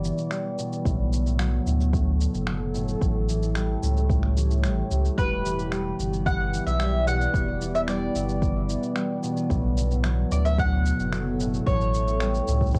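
A round, deep sub bass sits up front in this delicate, autumnal folktronica fragment at 111 BPM, moving through Em7, Bm7 and A7 beneath a warbling, nostalgic tape-like pad and a bright, ringing concert harp whose thumb-plucked arpeggios pass through a filter sweep and tape echo. Quiet overdriven electronic shaker and finger snaps are there from the start, a deep, overdriven electronic kick drum joins at 0.9 s, and a picked mandolin with double strings takes the melody from 5.2 s. The whole home-recorded cassette sound has light reverb.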